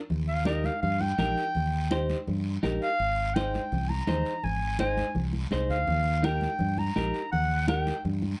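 Cumbia in Eb major, this short, danceable excerpt moves at a brisk 166 BPM in a straight 4/4 with a sunny outlook. A clear, classical-style clarinet carries the solo melody up front, coloured by plate reverb, while a twangy, compressed clean electric guitar, also up front, picks out bright accompaniment. Underneath, a growly fingered electric bass sits forward in the mix, and soft-handed, thin-skinned congas tap away dry in the background alongside a raspy, vintage-sounding guiro. The harmony moves simply from Eb to Ab at 3.0 seconds and back to Eb at 5.9 seconds. The overall production is dark with light reverb, giving the piece a mellow, intimate glow beneath its lively beat.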